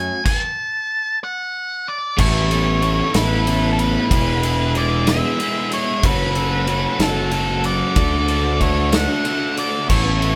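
A slow, straight 6/8 sway carries this restless, cathartic stretch of quiet-loud alternative rock, cut from a longer piece and played live by a band in one room with moderate studio reverb. A dark, fuzz-distorted lead guitar picks the melody from the start, sitting up front over a growly, overdriven fingered bass. The acoustic drum kit joins at 0.3 seconds with a punchy kick, a medium-tuned snare, ride and crash, its small, pumping room sound giving the groove a loose feel. At 2.2 seconds a cranked, double-tracked stack guitar crashes in with a bright, overdriven picked riff, and the harmony moves through Asus2, E, F#m and D. The result is a thick, churning wall of fuzz and overdrive that feels raw and urgent.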